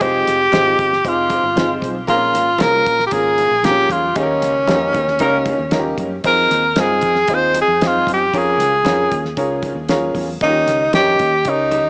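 A straight, steady four-beat groove drives this uplifting, joyful fragment of an uptempo 1960s-style soul number. Out front, a breathy tenor saxophone carries the melody with whispered, scooped notes, vibrato and a touch of tape echo. Beside it, an intimate upright piano with audible action noise and a slightly detuned, woody tone plays the accompaniment. Underneath, a dry, cloth-damped drum kit thuds on hi-hat, fat snare and tight kick, a round, foam-muted fingered electric bass sits low and punchy, and distant, ringing congas played with soft hands add quiet color. A band accent arrives between 4.2 and 6.2 seconds, where a mellow horn section in octave doubling appears for a moment at 5.2 seconds. The chords cycle through Fm7, Bbm7 and Eb7 twice, framed by light reverb and a small-speaker sound.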